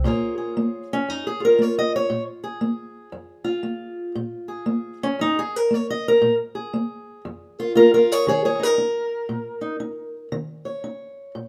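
Swung eighth notes in 4/4 give this soulful, mournful blues a loping sway. A single fingerpicked steel-string acoustic guitar carries the melody alone from start to finish, its dark, boxy parlour tone placed up front, moving off a Bbm7 chord at 8.3 seconds. Light reverb surrounds the short passage, which is cut from a longer piece.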